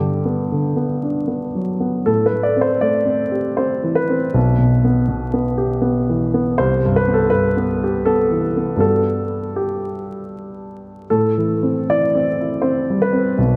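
A warm baby grand piano plays alone, up front with a natural tone and short sustain, carrying this tender, peaceful neoclassical minimalist fragment in 3/4 at 80 BPM with uneven, rubato timing. Its chords drift from Gmaj7 through Am7, Em/B and Cmaj7 before circling back, across a range from B1 to D5 in a tuning slightly below standard at A4 = 438 Hz. The dreamy mix is soaked in a long plate reverb and dusted with vinyl crackle, and the piece is cut from a longer work, ending at 13.6 seconds.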